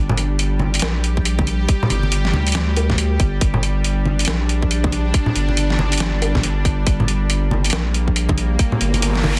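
A deep, thick saturated sub bass sits up front from the start, anchoring this brooding, heavy deep dubstep excerpt in G minor at 139 BPM with a swung, half-time feel. A tense, string-like drone holds sustained chords with slow attack, vibrato and its own reverb, while bright, soft-handed congas and bongos ring through dub echo and a gritty, pitched-down sampler-style kit adds overdriven hi-hat and snare. A tight, layered electronic kick enters at 1.2 seconds, and an electronic noise sweep arrives at 8.8 seconds within a dry, dense, heavily limited mix.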